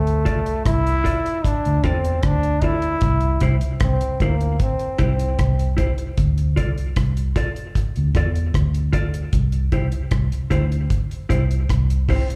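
A punchy trombone carries the melody up front with a light vibrato, its lines thickened by tape and slapback echo, sounding from the start until 5.8 seconds before a brief return near the close. This is a meditative, hypnotic roots reggae piece in D minor at 76 BPM in a straight 4/4, cut from a longer performance. The harmony rocks between D minor and C. Beneath the horn, a vintage muted fingered electric bass sits forward with a round, foam-muted, amped tone, while a deep, dry reggae drum kit keeps hi-hat, a tight kick and rim click close and smooth. A mellow electric guitar adds clean, compressed, fingered accompaniment from 0.3 seconds, softer in the mix and also coloured by tape and slapback echo. The whole band is heard as a live gig through the venue's PA, wrapped in club reverb.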